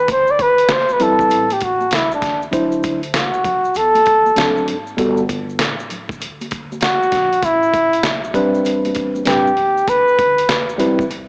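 A cassette-worn sound with a small-speaker character and a moderate spring reverb frames this mellow, cool jazz-hop cut from a longer piece, moving at 98 BPM in 4/4 with a 65% swing on the sixteenths. A breathy flugelhorn carries the melody up front as a solo from the opening second, its soft attack, light vibrato and jazz phrasing colored by cassette tape. Beneath it, a pitched-down, sampler-style drum kit brings a thumpy kick, a medium-tuned snare and hi-hat, all compressed and coated in vintage 12-bit grit, with the sense of having been re-recorded in a large room. A woody, growly pizzicato upright bass sits in the background, as do ringing, hard-handed maracas and congas. From 1.0 seconds a worn, slightly out-of-tune tine electric piano comes forward, lightly overdriven through its built-in speakers and cassette tape, comping over a harmony that drifts from D13sus4 through D9, D7, Gmaj7sus2 and Am11 before settling back on D13sus4 near 9.9 seconds.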